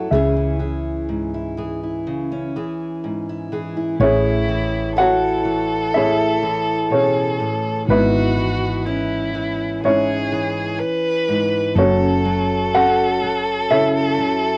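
Heartbroken and melancholic, this slow acoustic folk-pop ballad excerpt sets a dark, mellow baby grand piano melody with a cassette-tape tint over fingerpicked steel-string acoustic guitar with audible finger squeak and a growly, round fretless electric bass, while a focused, bowed solo violin with vibrato joins at 4.0 seconds as a second line, all in light reverb with the character of a home cassette recording.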